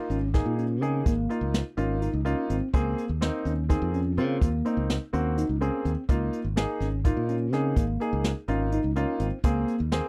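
A jazz brush drum kit sits up front with a boomy kick and medium-tuned snare, pushing this driving progressive instrumental excerpt in an uneven 7/8 meter. A growly, bright fingered electric bass plays beneath a mellow tine electric piano whose arpeggios carry a lush chorus, while an intimate concert grand piano with audible action noise supplies accompaniment over chords alternating between Db6 and Abadd9/Db. The dry, close 1970s-style studio sound keeps the parts natural and near.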